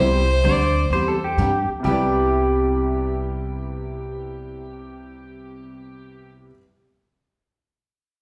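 Down-home and cheerful, this short western swing cut from a longer piece moves with a loose, swung lilt in four. A bright, intense fiddle carries the melody up front with light vibrato, playing only until 1.4 seconds. From 0.4 seconds a clean, compressed electric pedal steel guitar adds a second line, its fingerpicked slide tones blooming in volume swells. Underneath, a brilliant, intimate upright piano with audible action noise and long sustain shares the accompaniment with a full-bodied, fresh-stringed dreadnought acoustic guitar, both resting on a Cmaj7 opening. A woody pizzicato upright bass sits up front, anchoring the low end. The band plays live in one room, bathed in a generous large-studio reverb.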